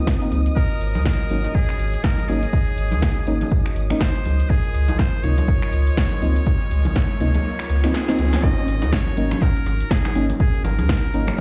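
A buzzy, close-miked trumpet with a metal mute carries the melody through echoing delay over a soulful deep house groove at 122 BPM, where a punchy electronic kick and a round sub bass sit up front, an overdriven kit of snaps, metallic hats and snare joins hard-handed background congas, dark nasal chord stabs and a nostalgic, warbling tape-like pad pump beneath, a veiled con sordino violin section lingers until 8.4 seconds, and a background riser from 5.8 seconds leads into the drop.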